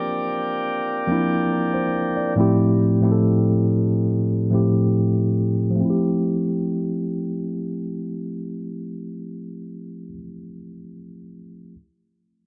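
Tender and dreamy, this slow R&B excerpt in F major at 70 BPM sets a mellow, up-front tine electric piano, low-pass filtered, against a full pipe organ principal chorus in romantic voicing that holds sustained chords only until 2.3 seconds, all under light reverb and the warbling pitch drift of a worn old cassette tape, with a filter sweep running to 5.8 seconds as the chords move from Bb6 through Fmaj7/A to Fmaj7.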